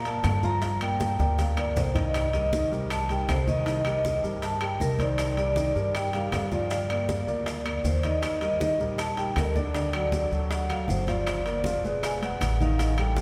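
A straight 4/4 groove at 158 BPM drives this fiery, sophisticated Afro-Cuban jazz fragment in G minor, where a close, full-toned vibraphone with fast motor vibrato carries the melody over woody pizzicato upright bass and an intimate concert grand with audible action noise, while low-tuned congas, tight high bongos, ringing metal-shell timbales, background claves and distant grainy maracas fill the percussion bed, a drum fill breaks in at 1.2 seconds, and the chords move from Gm7 through Cm7, Eb and D, all bathed in a cathedral-like reverb.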